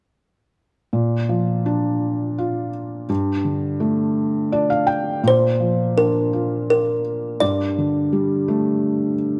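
A muted felt upright piano, intimate and soft with its action noise audible, opens this tender, gentle children's piece in Bb major at 0.9 s, moving rubato in 3/4 at 84 BPM between Bb and Gsus2 chords and adding a short fill at 4.2 s, before a woody, mellow kalimba with a fingertip pluck takes the melody from 5.3 s, both sitting up front in a close, detailed recording with light reverb.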